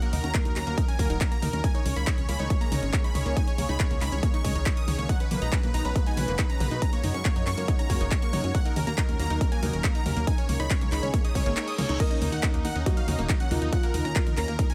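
Uplifting trance with a bittersweet, driving mood, cut from a longer piece, where huge, bright detuned supersaw chords carry the melody with digital delay over a thick, chorused and phased background pad, a lush arpeggiated unison pluck, and a dark, wave-folded analog bass, all four pumping to the sidechain, while a dry analog drum machine with crash, handclaps, hi-hat, ride and toms sits beneath a layered, up-front kick, both overdriven, until the kick drops out briefly from 11.6 to 12.0 seconds under a very quiet reverse cymbal and a soft, felt-muted upright piano with audible action noise and tape echo joins at 12.0 seconds.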